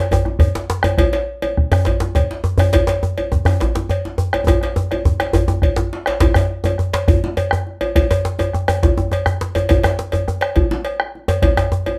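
This is a festive, driving excerpt of West African traditional drumming for a small percussion ensemble, moving at 138 beats per minute in 12/8 with a straight feel. A metallic cowbell, heard close and dry, runs through the whole passage alongside two djembes. One djembe is medium-tuned and set in a small room, while the other sits up front with a tight, cracking attack and the buzz of metal rattles. Beneath them, a round bombo, also close and dry, anchors the low end from just after the start to nearly the close. A drum fill from 4.5 to 6.2 seconds carries the ensemble into a new section, and a moderate studio reverb lends the whole group a modest sense of space.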